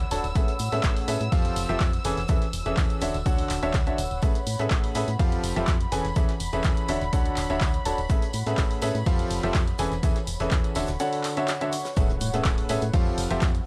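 A joyful, euphoric piano house excerpt opens with muted violins holding dark, veiled chords high in the background, a round, dark FM bass, a punchy analog drum machine with handclaps and hi-hat, a close, dry tambourine, and a deep, moody pad thickened by chorus and its own reverb. Within the first second a clear, smooth grand piano riff arrives up front, joined by a very quiet soul drum kit adding hi-hat, shaker and a fat snare, and at 0.4 s a punchy, tape-warm electronic kick drives the straight pulse. The piano, bass, violins and pad all breathe with sidechain pumping against the kick, while the harmony cycles through lush major-ninth chords, Amaj9, Fmaj9, Amaj9/E and Dmaj9, giving a bright, uplifting lift. At 12.0 s the violins stop and an electronic impact marks a drop in the background. A small room ambience and a cassette-tape character lend the whole mix a vintage grain.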